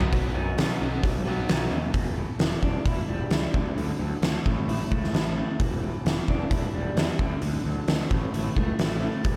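A straight 4/4 pulse at 131 BPM drives this dark, cathartic quiet-loud alternative rock excerpt in E dorian, where an oversized, low-tuned drum kit with a fat snare, boomy kick and pumping room sound sits up front beside a growly fuzz bass, while a tight distorted guitar riff in the background drops out at 1.9 s and a twangy, lo-fi guitar through a small old amp plays arpeggios with harmonic tremolo and slapback echo over Em7, D and A chords in a small room.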